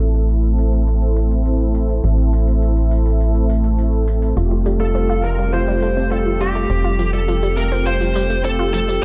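A moody, nostalgic synthwave passage at 103 BPM opens on a punchy sawtooth sequencer bass up front, round and brassy synth stabs with chorus and tape echo, and metallic, overdriven electronic hi-hat and tambourine in the background, while a silky string-like pad with ensemble chorus holds sustained chords under a filter sweep over an A minor chord. At 4.4 seconds the harmony moves to Fadd9 and a nasal, wave-folded analog pluck enters with chorused, cassette-tinged arpeggios, followed at 4.8 seconds by a smooth, dark overdriven lead guitar carrying the melody through tape echo. The production is dark and filtered, with light reverb.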